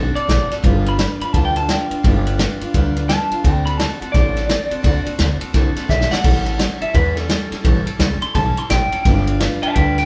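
A twangy electric guitar through a small old amp takes a clean, bright solo across the whole clip, its tone just slightly broken up as it rides high over a rollicking, rowdy rockabilly groove in swung 4/4. Beneath it, a picked steel-string acoustic guitar supplies full-bodied rhythm accompaniment, with a touch of finger squeak audible in its playing. The upright bass sits up front with a woody, thumpy pizzicato sound from gut strings. A vintage drum kit with dark cymbals, a punchy kick and a medium-tuned snare drives the band, dropping in a short fill at 5.9 seconds. The chords move through dominant sevenths on D, G and A, and the whole band sounds as if playing live together in one room with moderate studio reverb, cut from a longer piece.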